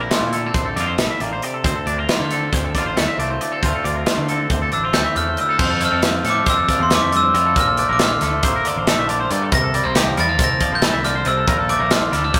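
A sparkling, bell-like glockenspiel played with hard plastic mallets carries the melody from 4.7 s in this intricate, restless math rock and midwest emo excerpt in 9/8, ringing over a pair of twangy, clean electric guitars (one picking a chordal accompaniment through spring reverb, the other picking compressed arpeggios above it), a direct picked electric bass, and an up-front drum kit with bright cymbals and a punchy kick, all captured in a rough rehearsal room with a moderate stone-room reverb.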